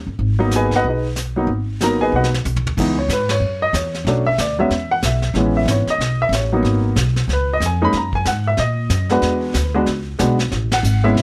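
A late-night, smoky jazz piano trio swings briskly in this short cut from a longer piece, set in a light reverb. The pizzicato upright bass starts things off alone, woody and thumpy with steel strings, sitting up front in the mix. A vintage brush drum kit follows at 0.2 seconds in a small room, with brushes on a high-tuned snare, dark cymbals, a punchy kick and a warm, rolled-off top. The baby grand piano carries the melody from 0.4 seconds, intimate and close, with short sustain and audible action noise. A drum fill at 2.1 seconds leads into a new section, and the band hits accents together at 3.3 and 10.7 seconds as the harmony moves through minor sevenths and major sevenths.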